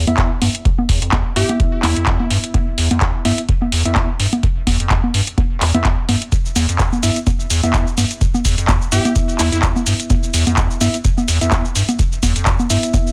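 Raw and driving, this acid house excerpt runs at 127 BPM in 4/4 with a 56% swing on the sixteenths, set in E phrygian and tuned to A4 = 439 Hz. A deep, rubbery acid bass riff sits between E2 and G2 from the start, its square-wave tone resonant and dark with a fast-attack filter pluck that decays, thickened by overdrive and a lush chorus. A booming analog drum machine, dry and up front, lays down congas, handclaps, shaker and metallic hi-hats alongside a dry, deep electronic kick. A mellow, clean tine electric piano plays stabs between B3 and E5 through a delay. A punchy, catchy unison lead of detuned sawtooth and sine with a noise layer and filter sweep appears only briefly, at 1.4 s and again at 8.9 s, its phaser, cassette tape colour and delay adding character. Light reverb and a dense, heavily limited modern master keep the whole short cut loud, opening on an E5 chord.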